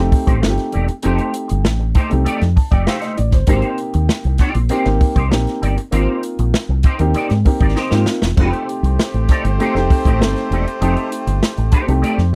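This dry, close recording has a 1970s studio feel, with little reverb and the drums and bass sitting up front. It is a sly, funky groove at 98 BPM in 4/4 with a straight feel, cut from a longer piece and running about 12.3 seconds. A swinging big-band drum kit drives it with a punchy kick, a medium-tuned snare, hi-hat and splash cymbal, and its airy, polished hall tone adds a drum fill from 7.8 to 8.4 seconds. Underneath, a round, amped fingered electric bass holds the low end while a dark, woody upright piano plays boxy stabs and adds a short fill at the very end. An electric guitar with an envelope filter and ensemble chorus comps in a clean, picked, scooped tone as the chords move from F9 to Abmaj7 and back. At 8.4 seconds a horn section enters with a second line, its light vibrato and octave doubling lending a pop-style sheen to the close.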